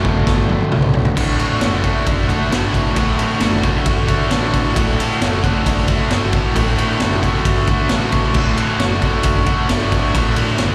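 A straight 4/4 beat from a gritty, boomy-kicked garage drum kit plays from the start, with a fill between 0.3 and 1.2 seconds leading this raw, swaggering garage rock cut into its main section. Up front, a bright, crunchy double-tracked electric guitar picks out an overdriven riff, while a fuzzed, tube-saturated bass sits lower in the background. The whole band sounds like a live gig heard through the venue's PA, with a recital hall reverb around it.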